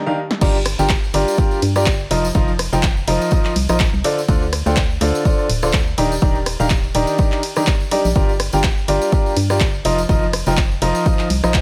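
A bright, brilliant concert grand piano riff with long sustain, digital delay and sidechain pumping leads this soulful, energetic piano house excerpt in G minor at 124 BPM with a 16th-note swing. A punchy analog drum machine with snare, handclaps, hi-hat, ride, rim click and crash in a short room joins at 0.3 seconds during a short drum fill. The drop then lands at 0.4 seconds, bringing in a punchy, tape-warm electronic kick up front, a hollow, dark, organ-like FM bass that also pumps, and a small-room tambourine in the background, all moving through Gm7, F7sus4, Dm7 and Ebmaj7 under a digital ambience.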